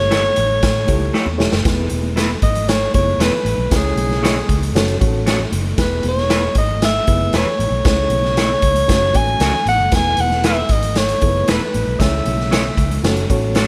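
Danceable and joyful, this uptempo 1960s-style soul cut features a raw garage drum kit whose punchy kick, gritty snare and pumping stone-room sound sit up front, with a drum fill at 1.1 s leading into the main groove at 1.7 s. A breathy, mellow alto saxophone carries the melody in a smooth jazz style with light vibrato and scooped notes, over a reedy electric piano with medium tremolo, a round, foam-muted fingered bass and dark, slightly broken-up electric guitar stabs from a small old amp. Very quiet, close and dry high-tuned congas add soft hand percussion beneath, all under light reverb.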